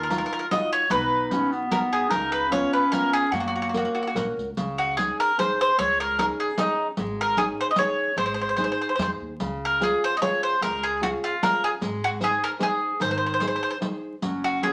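This Italian folk serenade, cut from a longer piece, moves in a lilting triple metre with a sunny, romantic mood. A bowl-back mandolin carries the melody up front, its picked double strings giving the line a shimmering, acoustic glow. A classical-style clarinet, distant and roomy, adds a second line over the first 4.4 seconds, just before the passage shifts key and moves into a new section, then returns briefly at 14.2 seconds. Beneath them, a small-sounding nylon-string guitar is fingerpicked as accompaniment, while a woody, steel-strung upright bass plays pizzicato low in the mix. A riq with bright jingles, played with soft hands, adds gentle percussion, and the whole recording sits in a wet studio reverb with a layer of vinyl crackle.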